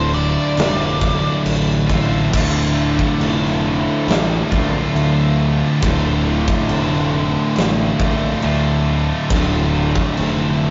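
Brooding and heavy, this slow stoner and doom metal excerpt at 69 BPM in D minor opens with a brief wah-inflected fuzz lead guitar melody that stops at 1.4 seconds, while a bright, double-tracked high-gain guitar riff plays alongside two dark fuzz guitars in the background, a growling overdriven fingered bass and a big acoustic drum kit with a punchy kick, medium-tuned snare and crash cymbal in a bright stone room, all captured as a rough rehearsal-room recording with saturated, muffled highs and moderate reverb.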